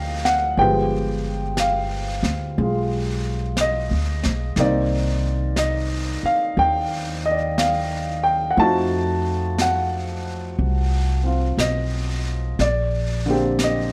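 A smoky, intimate jazz ballad in G minor opens with a natural-sounding upright piano comping up front over a thumpy, woody pizzicato upright bass, moving slowly at 60 BPM with a swung 4/4 feel through Gm9, Cm9 and F7b9 before settling on Bb69. From 0.2 seconds, a vintage brush kit joins at a lower level, its brushed, high-tuned snare and hi-hat soft and rolled-off at the top. Light reverb gives the trio a close studio-room glow in this short excerpt from a longer piece.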